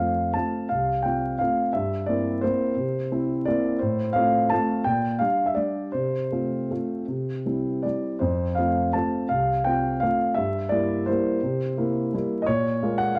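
Sparkling and elegant, this classical piano waltz moves in 3/4 at a lilting 156-185 BPM, its rubato feel letting the pulse stretch and give. A solo concert grand carries the whole 13.2 seconds, its tone warm with a deep bass and placed up front, spanning C2 to A5. Set in F major, the harmony passes from F through C7/G, F/A and Gm/Bb before returning home, then closes the fragment on a darker Bbm7 at 12.5 seconds. Close, detailed microphones capture the instrument inside a moderate recital hall reverb, and vinyl crackle adds an aged patina. The passage is cut from a longer piece.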